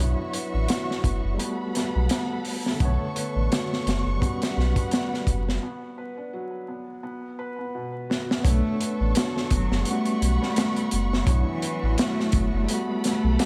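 A dreamy mix soaked in plate reverb and vinyl crackle frames this brooding, melancholic trip hop excerpt. A crunchy breakbeat kit, gritty and dark with a high-tuned snare and tight kick, sits up front from 0.3 seconds beside a deep, round dub sub bass thickened by tube saturation. Above them, a bright, barky tine electric piano plays accompaniment through tremolo and tape echo, while a felt-muted upright piano spins soft, intimate arpeggios in the background with subtle chorus and echo. A lush studio violin section holds sustained chords with vibrato and portamento over a drifting progression of extended chords, from Dmaj9 and Gmaj9 through Bm9 and A13/B. After a break at 5.6 seconds and a short drum fill, a distant solo cello enters at 8.5 seconds with a warm, expressive, echoing melody.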